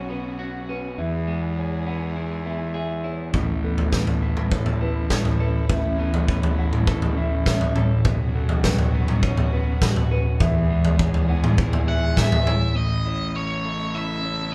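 A moderate large-studio reverb surrounds this band playing live in one room, giving a hopeful, soaring post-rock passage in A major at 102 BPM in a straight 4/4. From the start, a lush, bowed string section sustains chords in the background with vibrato and portamento, while a dark, slightly broken-up electric guitar picks compressed arpeggios and a felt-muted upright piano adds mellow, boxy arpeggios with audible action noise and a slapback echo. Underneath, a round, overdriven fuzz bass anchors the harmony as it moves through Bsus2, E and Aadd9. A big acoustic rock kit arrives at 3.3 seconds, its punchy kick, medium-tuned snare and toms sitting up front yet roomy, and it drops out at 12.6 seconds. Just before that, at 11.9 seconds, an octave-fuzz lead guitar enters with a distorted, picked melody, pushing the passage toward its next section as this cut from a longer piece ends.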